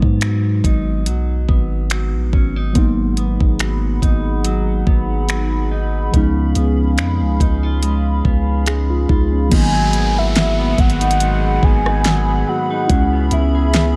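Contemporary R&B in G# minor at 71 BPM with a lightly swung sixteenth feel, sensual and moody, where muted felt-like synth keys with chorus, a clean fingered electric guitar playing delayed arpeggios, a deep sine-toned 808-style bass and an up-front electronic drum kit with a knocking kick, fat snare, dark hats, finger snaps and rim clicks carry a G#m7 to C#7 progression, a hollow, airy pad with sidechain pumping enters at 3.1 seconds, and at 9.5 seconds a round, horn-like synth lead with vibrato and delay takes the melody over a downlifter as the harmony returns to G#m7 before moving to C#m7, all in a dry, close sound.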